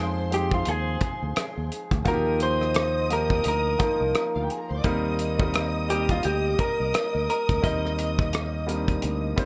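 A dark, woody violin section opens this lush 1970s-style soul excerpt alongside a natural-sounding baby grand piano and a growly fingered electric bass set up front. The violins are bowed with vibrato, sul tasto, and sit distant in the studio as a second line. At 0.3 seconds an acoustic soul drum kit with hi-hat, kick drum and rim click enters, up front in a small room with a tight kick and a rolled-off top. At the same moment an electric guitar carries the melody through a small old amp, its picked tone slightly broken-up, lo-fi and compressed. The mood is romantic and warm at 86 BPM in 4/4 with a swung 16th feel, as the harmony moves from Fm7 to Ebmaj9 and then to Cm7 at 4.8 seconds. The bass stops at 9.3 seconds while the other parts carry on to the cut.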